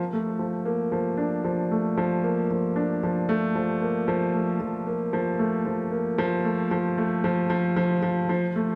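A wet echo chamber with a 2.2-second tail wraps this short cinematic electronica fragment, cut from a longer piece, at 114 BPM in straight 4/4 and tuned to A4 = 443 Hz. A lone concert grand piano, warm and up front with deep bass, plays alone from 0.0 to 8.8 seconds in the range F3 to D4. Its moving phrases form a build-up that runs to 8.3 seconds.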